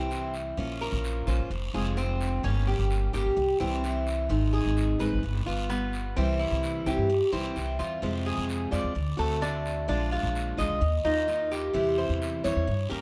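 A dark, lightly reverberant production sets a sultry mood for this excerpt of Cuban son and guajira at 129 BPM in straight 4/4. Up front, a woody, thumpy pizzicato upright bass on gut strings anchors a boxy picked steel-string acoustic guitar, while a metallic Cuban tres with double strings spins arpeggios above them. A raspy guiro joins at 0.1 seconds as the chords move from C through Bbm, Fm and G7 before the repeated section turns toward D7, Bb7 and a closing C/E.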